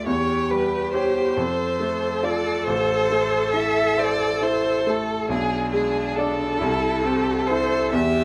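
A focused violin with vibrato carries the lyrical, tender melody of this slow romantic piano trio movement, placed up front over a rich, bowed cello singing a second line beneath it. A bright grand piano with long sustain and a vintage polish fills in the accompaniment, all three playing together from 0.0 to 8.2 seconds in a rubato 6/8. Light reverb softens the room around this short passage cut from a longer piece.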